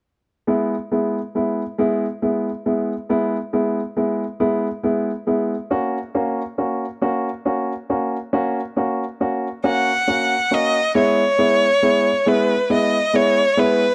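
Tender and swaying, this short cut from a six-eight pop ballad moves at 46 BPM in 6/8, with a polished, up-front baby grand piano laying down accompaniment over E and F# chords from 0.5 seconds before a single focused, bowed violin with vibrato enters at 9.7 seconds to carry a clear melody, all set in light reverb within a dark production.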